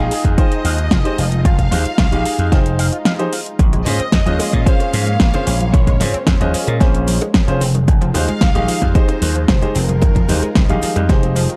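A dry, gritty nu-disco excerpt at 112 BPM in F minor, sleek and sensual, where a punchy overdriven electronic kick and a pop drum kit with a fat snare and metallic hats drive an up-front amped slap bass, a polished short-sustain grand piano and a very quiet, thick detuned pad under an expressive bowed violin section with tape echo, while a twangy envelope-filtered guitar riff with analog chorus plays in the background until 3.4 seconds, and after a brief break a round, sidechain-pumping analog pluck arpeggio and very quiet, close maracas, congas and bongos enter at 3.6 seconds as the chords move from Fm9 to Bbm9 and back.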